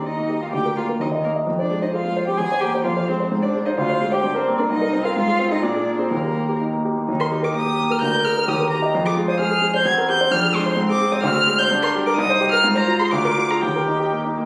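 A quick, graceful and cheerful classical-period piano trio movement in Eb major at 129 BPM in 2/4 with a rubato feel, where a veiled, con sordino violin carries the melody up front, a dark muted cello adds a soft-edged second line with light vibrato, and a polished baby grand piano accompanies, all set in a moderate recital-hall reverb within a short excerpt cut from a longer piece that states its opening section twice.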